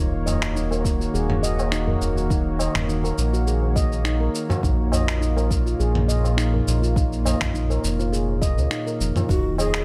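A detuned, chorused analog pad, a mellow handpan ringing through digital delay and a round, deep bass open this hypnotic, meditative organic downtempo piece, with the pad and bass pumping under sidechain as the chords move from Ebm7 to Bbm and back. From 0.3 seconds a gritty, compressed sampler-style kit of finger snaps, shaker and toms arrives alongside a low-tuned tabla set in the background, and a tape-warm electronic kick follows at 0.8 seconds, the percussion carrying a light swing inside a softly reverberant space. At 9.3 seconds a breathy, hollow cedar flute enters with a short tongued phrase touched by vibrato.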